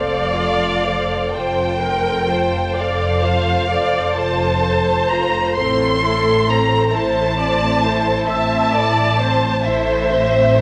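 An up-front violin section carries the melody high above the ensemble, its bowed line expressive and lush with vibrato and a smooth top. This is a serene, lyrical slow movement for string orchestra in 12/8, shaped with gentle rubato and cut from a longer piece. Beneath it, a close, chamber-sized second violin section sings a lower line with vibrato and touches of portamento, while the violas fill in a soft-attacked accompaniment. Cellos and double basses anchor the bass, the cellos rich and even, the basses warm and lush, all five sections sounding together from the first moment to 10.6 seconds. The harmony rests on F before shifting to A minor at 5.6 seconds, and a wet concert-hall reverb wraps the strings in a spacious, glowing bloom.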